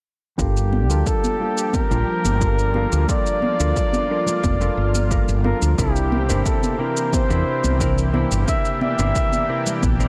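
A growly, round fretless electric bass sits up front in this smooth, wistful sunset chillout excerpt at 89 BPM in G dorian, moving between Gm7 and C7 at 5.8 seconds. Above it a warm flugelhorn carries the melody with light vibrato and a soft attack, dressed in digital delay and shimmer reverb, while a dark, clean hollow-body jazz guitar accompanies under a filter sweep and a lush, warbling sawtooth pad holds sustained chords with chorus. A punchy, overdriven electronic kick and a gritty, compressed shaker drive the groove, with soft-handed vintage congas entering at 0.7 seconds in the background, all set in light reverb and digital ambience.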